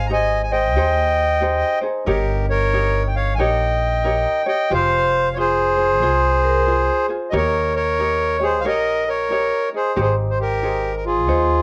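Hawaiian music in a dreamy, languid mood, carried by a swung 4/4 feel and heard as a short cut from a longer piece. A reedy single-reed accordion with dry tuning sits up front and carries the melody throughout, its tone clear and boxy. Beneath it, a fingerpicked ukulele plays light acoustic accompaniment, while a woody pizzicato upright bass on steel strings holds the low end, also placed up front. For a brief moment between 6.0 and 7.1 seconds, a very quiet vibraphone played with medium mallets and the motor off adds a metallic, ringing second line. The harmony moves from Abmaj7 through Eb7/G and Fmadd9 to Eb7 before settling back on Abmaj7, all inside a moderate small-room reverb. The whole recording has a worn, old-cassette character, with warbly pitch drift coloring the sound.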